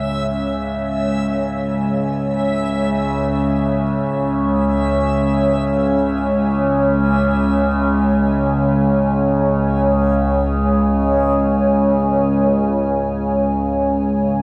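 Dark ambient drone in free time and C# minor, this ominous, unsettling fragment of a longer piece places a deep, detuned analog pad of sustained chords with ring modulation and chorus up front beside a resonant drone whose moving overtones pass through chorus and phaser as it fades in over the first 12.5 seconds, while a reversed, granular, bright texture swells and fades out by 12.5 seconds, within a huge, wet reverberant space.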